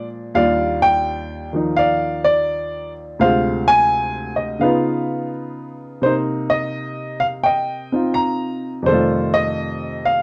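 Sophisticated and warm, this brief solo jazz fragment swings at 84 BPM in 4/4 as a single upright piano, woody, smooth and vintage with short sustain and sitting up front, moves through Ebmaj9, Dm7b5, Db9, Cm7 and F9 across a range from D2 to Bb5, framed by a moderate club reverb and a dark, warm production.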